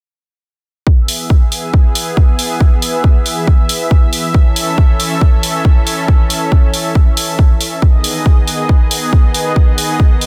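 A punchy, up-front electronic kick drives a straight 4/4 pulse at 138 BPM from 0.9 seconds, joined by layered hi-hats that pump against it, while a lush, detuned unison pad in E major spreads thick, airy sawtooth chords moving from E to A to G#m through chorus and sidechain pumping, giving this uplifting, soaring trance excerpt a bright lift inside a digital ambience.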